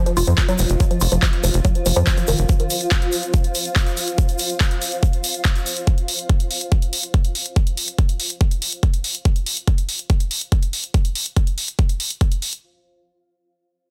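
This alien, psychedelic trance passage, cut from a longer piece, opens at 142 BPM in a straight 4/4 with a barely audible electronic impact, a cloudy granular pad and a woody, wave-folded pluck riff, while a filter sweep plays on a synth arpeggio sound over an F5 chord, tuned to A4 = 441 Hz. The pluck sounds organic and warbling with a vintage, mellow edge, treated with chorus, digital delay and sidechain pumping before it stops at 2.3 s. Driving the groove are a knocking, overdriven electronic kick drum and a layered drum and bass kit with bright hats and handclaps, both up front and re-recorded in a small room. A tight, punchy sequencer bass with a saturated sawtooth-and-square tone joins briefly, while a grainy tube shaker sits close and dry in the background. The evolving, blurred pad, detuned and soaked in its own reverb and pumping, fades out by 9.3 s, leaving the drums to carry on to 12.6 s in a dense, heavily limited modern mix with light reverb.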